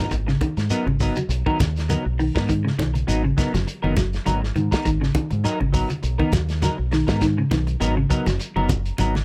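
A swung sixteenth-note groove at 101 BPM in 4/4 drives this defiant afrobeat passage in G# minor, cut from a longer piece and resting on a single G#m9 chord. The crunchy breakbeat drum kit sounds dark and gritty, with a punchy kick, a medium-tuned snare, hi-hat and a rolled-off top, and it plays a fill at 9.0 seconds. A deep dub fingered electric bass sits up front, round and direct, while low-tuned congas with thick skins stay in the background and a grainy, compressed shekere adds a mellow grit. Two clean, picked electric guitars complete the arrangement: one plays arpeggios through lush chorus, the other plays stabs through analog chorus. The recording has the dry, close feel of a 1970s-style studio session in a small room.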